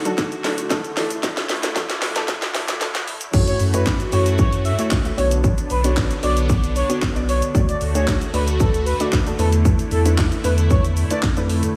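Up front, a punchy, layered house drum kit with a cracking snare, handclaps, hi-hat, shaker and crash cymbal drives this confident, bittersweet dance-pop excerpt at 114 BPM in 4/4. It opens with a build-up, drum fill and filter sweep before the drop lands at 3.3 seconds. Beneath it, a filtered supersaw swell of detuned, airy sawtooth unison with a noise layer holds sustained chords, while a soft, round pluck adds gentle accompaniment colored by chorus and slapback echo. At the drop a deep sine sub bass enters, and it pumps with the sidechain, as do the swell and the pluck. A smooth, expressive synth lead arrives at 3.5 seconds to carry the melody, its dark sawtooth-and-triangle tone shaped by vibrato, chorus, slapback echo and digital delay. The harmony cycles through D, E7sus4, F#m7 and Bmadd9, and a lush hall reverb with small room ambience gives the mix a big arena sound.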